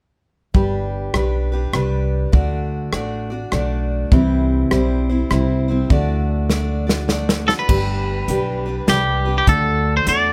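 Honky-tonk and classic country in a swinging 3/4 waltz at 101 BPM, this short excerpt in G major feels nostalgic and sunny. A bright, picked dreadnought acoustic guitar carries the accompaniment, while a woody, thumpy pizzicato upright bass holds down the low end, both sitting up front from the start. A natural country drum kit played in an airy studio room adds a punchy kick, a medium-tuned snare, rim clicks, hi-hat and crash cymbal, and a drum fill from 6.5 to 7.7 seconds ushers in a new section. At 7.5 seconds a bright, clean, compressed, twangy electric guitar enters with the melody, picked and up front. The chords move through G, D, C and D before returning to G and D, all under a light reverb that gives the polished mix a touch of space.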